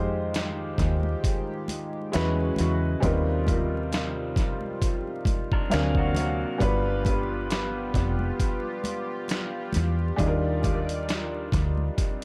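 Late-night and smooth, this 67 BPM neo-soul R&B excerpt with a light 16th-note swing sets a woody, intimate upright piano with audible action noise and dub echo over a shimmering chorused pulse-width pad, a round, foam-muted deep dub bass, a gritty sampler-style boom bap kit with a thumpy kick, very quiet close congas, and a slightly broken-up lo-fi guitar line that appears only from 5.5 to 6.6 seconds, all moving through chords from Fm9 to Ebmaj9 in an echo-heavy mix dusted with vinyl crackle.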